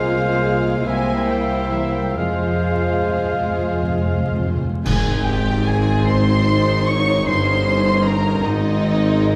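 A slow, elegiac movement for symphony orchestra opens in F minor at 44-53 BPM in a rubato 6/8. Dark, bowed strings sul tasto come first: violins on a second line, violas and double basses beneath them, with a clear oboe, a mellow, distant clarinet, a clear bassoon and a very quiet French horn section holding sustained chords. A ringing harp plays arpeggios throughout. From 0.9 s a yearning violin melody enters above, joined by a very quiet, hollow flute and a pure, floating cello line. Timpani struck with hard mallets play a fill from 2.2 s, and at 4.8 s a soft-attack tuba joins the low end, just before the music turns to Ab major at 4.9 s with an accent from dark clash cymbals and bass drum. Moderate scoring-stage reverb and a layer of vinyl crackle give this excerpt from a longer piece a lush, aged glow.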